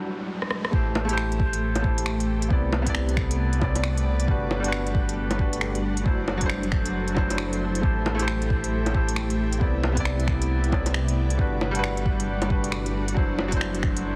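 Future garage with a ghostly, nocturnal mood and a swung 4/4 feel, cut from a longer piece, opening on a brief electronic riser and drum fill before a deep, round sine sub bass and a tape-warm electronic kick arrive at 0.7 s beneath an up-front felt-muted upright piano with sidechain pumping and tape echo, an ethereal, warbling detuned pad in the background, low-pass-filtered bongos, finger snaps, smooth hats and rim clicks re-recorded in a large room, and a very quiet breathy wind-like noise texture from 2.4 s, all framed by a heavily compressed radio sound with vinyl crackle and light reverb over a cycling Am7, Cmaj9, Gmaj7 and D7/F# progression.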